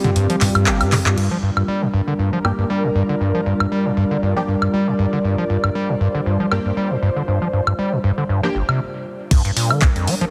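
This cut from a longer acid house piece opens on a Gm chord, with a squelchy, gritty acid bass riff carrying tape echo under a dark, detuned sawtooth pad and an ethereal, airy pad, both pumping against the sidechain. A punchy, dry analog drum machine, overdriven and up front, sets a driving, hypnotic 4/4 at 118 BPM with a 55% swing on the sixteenths, rattling through crash cymbal, handclaps, hi-hat, toms and woodblock, with a drum fill near the end of the opening drop. From 0.7 seconds a nasal, band-passed chord stab with ring modulation, phaser, ensemble chorus and tape echo joins in, and a filter sweep runs over it through the long middle stretch. The whole mix sits in G minor, heavily compressed like a radio broadcast and bathed in a lush hall reverb. After a brief stop, a thumpy, sampler-style electronic kick punches in alongside the bass, dark pad and drum machine at 9.3 seconds.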